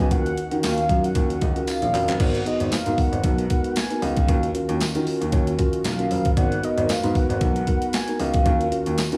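A swung 16th-note groove at 115 BPM drives this slick, late-night early-eighties boogie funk cut in G# dorian, where an up-front, overdriven 12-bit drum machine with a thumpy kick and a fill at 1.7 seconds sits under a round, warbling horn-like synth lead with chorus and slapback echo, a mellow tine electric piano, a very quiet detuned analog pad, a natural baby grand piano carrying the bass, and a jingly, bright tambourine entering at 0.6 seconds in the background, all cycling between D#m9 and G#m9 in a dry room.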